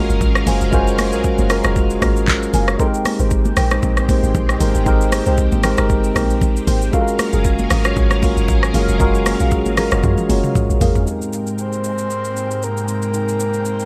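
A swung 116 BPM groove in 4/4 from a soft-kicked electronic R&B drum kit with dark hats, handclaps, rim clicks, shaker and toms, plus bright, damped congas in the background, drives this soulful, relaxed amapiano excerpt in Ab major, where a round, percussive FM log drum bass thumps beneath a clean, up-front tine electric piano, lush vintage string-machine chords colored by phaser and ensemble chorus, and deep, wave-folded chord stabs washed in chorus, phaser and delay over Gbmaj9 and Abmaj9 harmony, until a drum fill at 10.0 s leads to the log drum stopping at 11.1 s and a breathy, flute-like synth lead with vibrato, chorus and delay entering at 11.6 s.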